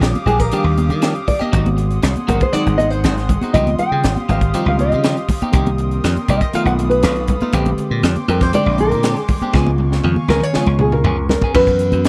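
A straight 4/4 groove at 120 BPM drives this soaring, funky stretch of electric jazz fusion, cut from a longer piece and built on a punchy, up-front kit with a high-tuned snare and a small, pumping room sound, while damped, high-tuned congas patter softly in the background from 0.2 seconds. A dry, bright thumbed slap bass sits equally forward, foam-muted and direct. Over this, a dark, woody nylon-string guitar carries the melody from 0.3 seconds, thumb-plucked with the full body of old strings. A worn, slightly out-of-tune tine electric piano, lightly overdriven through built-in speakers, supplies mellow accompaniment, joined by compressed, clean picked stabs from an electric guitar with subtle chorus and a soft, breathy, detuned pad with chorus holding sustained chords until 11.5 seconds. The harmony moves through rich colours such as Ebmaj9, Dbmaj9#11 and Bb13 before a drum fill from 9.5 seconds leads to an F#7sus4, all in a close, nearly reverb-free sound.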